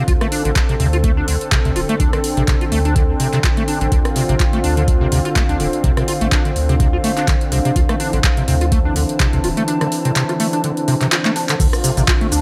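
Trippy and gritty, this acid house excerpt at 125 BPM in D minor rides a swung 4/4 groove over a single Dm7 chord, with a squelchy, resonant square-wave acid bass riff carrying overdrive, chorus and tape echo, a smooth detuned sawtooth pad with vintage sampler grit, a lo-fi ring-modulated tape-like pad, a round sine sub bass, a booming analog drum machine with metallic hats, handclaps, rim clicks, shaker and crash, and a deep overdriven kick, all but the kick and drum machine pumping to the sidechain, with a drum fill at 11.2 seconds in a dry mix.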